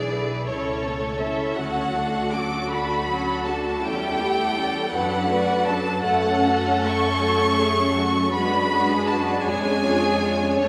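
Classical slow romantic movement for string orchestra in a lyrical, serene 6/8 with flexible rubato, where an up-front violin section sings a rich, vibrato-laden melody above a lush, focused second violin line, distant smooth violas, a warm cello section in the background and a clear, intense double bass section, the ensemble set in a wet church reverb in this brief cut from a longer piece.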